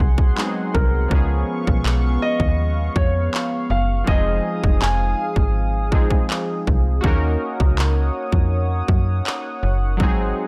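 Opening at once on warbling, airy analog keys over a shimmering, sidechain-pumped pulse-width pad and a snappy, metallic FM bass, this sensual, longing contemporary R&B fragment brings in an up-front trap kit of hard-clipped kick and handclaps at 0.2 seconds, while a deep-toned grand piano carries a delay-touched melody from 0.7 to 6.6 seconds, all within a digital ambience.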